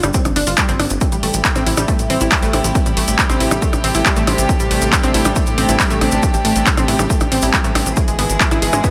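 An up-front, tape-warm techno kit of handclaps, hi-hat and percussion blips opens this bittersweet, euphoric uplifting trance excerpt at 138 BPM in A minor, alongside a grainy tube shaker in the background, a funky sawtooth bass and a bright, detuned analog pluck spinning arpeggios through chorus and digital delay. A punchy electronic kick joins a split second later, and a pure, floating bowed string section enters at 1.0 s with soft-attack chords moving from Am7 to E/G#, the bass, pluck and strings all pumping to the sidechain in light reverb.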